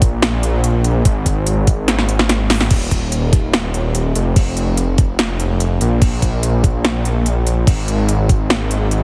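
Euphoric and lush, this future bass excerpt moves at 145 BPM in 4/4 with a half-time feel. A thick, detuned saw bass sits between Eb1 and Bb1, its unison sawtooth layers saturated and sustained with a fast attack, treated with chorus and pumping under sidechain compression. An electronic kick drum knocks up front with a tape-warmed weight, playing until 8.4 seconds. A layered big-room dance drum kit adds a punchy snare, crisp hats and crash cymbal, its sound re-recorded in a large room. Between 1.9 and 2.7 seconds the kick drops out for a drum fill, and the whole mix carries little reverb and a heavily compressed, radio-ready sheen.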